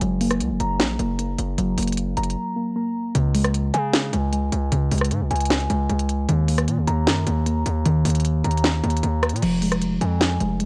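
Muted, felt-like synth keys play dark, intimate arpeggios through chorus, a low-pass filter and tape echo, and a filter sweep colours them from 9.4 seconds in this eerie, hard-hitting trap excerpt with a half-time feel. Beneath them, a heavy, saturated 808-style bass snarls with aggressive distortion, while an electronic trap kit adds a sharp snare, crisp hi-hats, rim clicks and crash cymbals roughened by vintage 12-bit sampler grit. A brief break arrives at 2.4 seconds, and the whole piece sounds dry and up front, with the gritty character of hardware and cassette tape.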